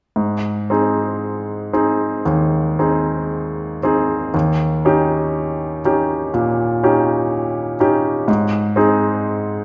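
A bright, intimate baby grand piano sits up front in a wet recital hall with a polished sheen, its short sustain and audible action noise close at hand as it plays a tender, lyrical classical accompaniment in Ab major at a rubato 55-63 BPM in 4/4, moving from Ab to Eb7 at 4.3 seconds and back home to Ab at 8.3 seconds in this brief cut from a longer piece.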